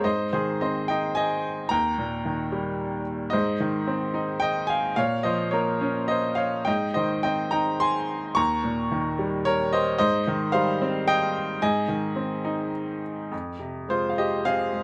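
A bright baby grand piano carries this short, lyrical classical excerpt alone, its brilliant, intimate tone sitting up front with long sustain and audible action noise from close, detailed microphones in a dry room. In a flexible, rubato triple metre, the mood is bittersweet and brooding, the harmony moving through major-seventh and added-ninth colours across a register from Eb2 to Db6. At 13.3 seconds the music turns to a new section on an F minor chord just before the cut at 14.8 seconds.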